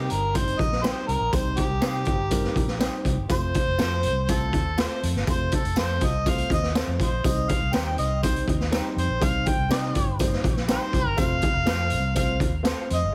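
A straight, driving 4/4 groove from a gritty, saturated garage drum kit with a boomy kick and a round, punchy foam-muted electric bass underpins this passionate, uptempo 1960s-style soul excerpt, where a mellow harmonica with light vibrato and scooped notes solos up front through plate reverb and tape echo over woody upright piano chords, a jingly tambourine in the background and a dark, slightly broken-up electric guitar adding spring-reverbed stabs from 0.8 seconds, all framed by a heavily compressed radio sound as the chords move between Cm and F.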